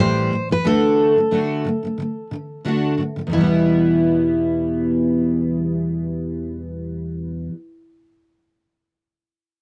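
A gently swung 90 BPM 4/4 pulse carries this reflective, tender acoustic pop fragment in E minor, where an up-front, full-bodied dreadnought steel-string guitar picks the melody over a double-tracked jumbo steel-string accompaniment with fresh strings and audible finger squeak, moving from Am7 to D before settling on Em at 3.3 seconds, all captured in a dry, close 1970s-style booth sound.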